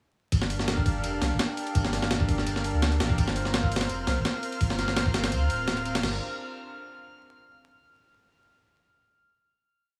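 Raw and nostalgic, this short drum and bass piece in G minor at 168 BPM launches straight into a drop at 0.3 seconds, where an up-front, gritty breakbeat kit (heavily chopped, pitched up, with a thumpy kick, medium-tuned snare, crash and ride) drives over a deep, tube-saturated sub bass playing a dub-style line and a lush, warbling detuned pad holding rootless Gm7 and Bbsus2 chords with syncopated pushes, while a glassy sine texture drifts in on one held high note at 3.9 seconds before everything settles onto a final Gm7 at 6.0 seconds, all wrapped in vinyl crackle and small-room ambience.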